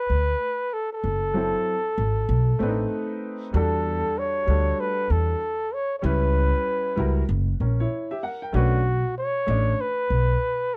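A breathy, mellow flugelhorn carries the melody from the very start in a jazz-style solo, sitting up front with light vibrato and scooped notes as it moves between F#4 and C#5. This is a cool, nocturnal slice of jazz-hop cut from a longer piece, moving at 96 BPM in 4/4 with a 62% swing on the sixteenths, in B minor. A pizzicato upright bass on steel strings enters at 0.1 seconds, its dark, woody tone placed up front beneath the horn. An upright piano with a smooth, vintage character and long sustain comes in at 1.3 seconds to supply accompaniment, sitting lower in the balance. The harmony drifts through half-diminished and altered dominant colours such as F#m7b5, B7b9 and Em11 before resolving to Bm9. The sound is dry and close, in the manner of a 1970s studio session with a small room ambience.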